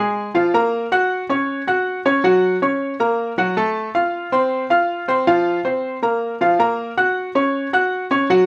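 Latin solo piano in a passionate, fiery mood, where a bright, worn, intimate baby grand sits up front with short sustain and audible action noise, moving through chords of Bb5, Gb, F and Bbsus2 in a studio with moderate reverb across this 8.5-second cut from a longer piece.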